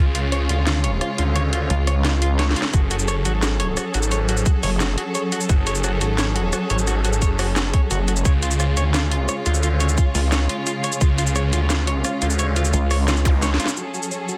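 Swirling, thick and up front, a phased detuned saw bass with overdrive drives this futuristic, aggressive slice of dark technical drum and bass, holding the low end until 12.7 seconds. A nasal vowel-sweep wobble bass with chorus cuts in for short bursts, first at 1.7 seconds, while an overdriven, tight electronic kick arrives at 2.7 seconds after a brief drop and a drum fill. The drum kit brings a cracking snare, metallic hats, rim clicks and shaker, with a small-room character. Above this, a lush symphonic string section holds bowed chords with vibrato and a bright, clean semi-hollow electric guitar picks arpeggios through a low-pass filter and digital delay, both carrying sidechain pumping. The harmony moves between C# and F# minor, a very quiet zap sounds near the close, and the dense, heavily limited mix carries light reverb.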